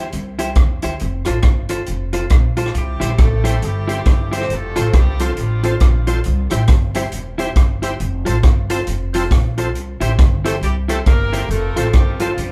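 Bouncy and cheerful, this ska excerpt swings along at 137 BPM in C mixolydian as a roomy, boomy-kicked big-band drum kit with hi-hat and rim click and a woody, thumpy pizzicato upright bass sit up front alongside a clean, compressed picked electric guitar bathed in spring reverb, while a bright, lightly overdriven tonewheel organ with chorus vibrato and slow rotary speaker adds background stabs from 3.0 s and a smooth, loose horn section with octave doubling and tape echo carries the melody from 2.8 s, returning at 10.5 s, all over a C to F chord sway in a small live room.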